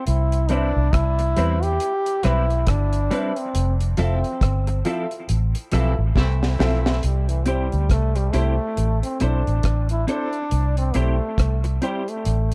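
Heard through an echo-heavy mix with a small room ambience, the trombone, guitar and horn section all trail dub echoes. This laid-back, uplifting roots reggae excerpt swings gently in 4/4. A punchy, foam-muted fingered electric bass and a dry, deep drum kit sit up front, the kit pairing a tight kick and high-tuned snare with rim clicks and hi-hat. A bright trombone with light vibrato carries the melody from the start. Underneath, a clean, compressed electric guitar with ensemble chorus plays the accompaniment, and a mellow grand piano adds stabs in the background, its action noise audible. The band hits accents from 3.5 seconds, a clear horn section in octave doubling adds a brief second line, and a drum fill leads into the second half at 7.0 seconds, where the trombone takes a solo over chords moving from C to A minor and back.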